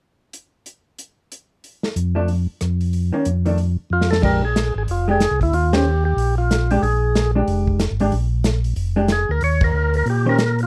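Greasy and soulful, this swinging soul jazz organ trio passage opens on a dry, dark drum kit with a tight kick and dark cymbals, joined at 2.0 s by a round, lightly overdriven tonewheel organ bass with chorus vibrato and a slow rotary speaker, then by a clean, compressed hollow-body electric guitar playing accompaniment. At 3.9 s, alongside a drum fill, a second tonewheel organ takes the melody with a percussive, key-clicking attack and its own slow rotary, while the band punches out accents. Every part sits up front in a close, detailed recording with light reverb, cut from a longer piece.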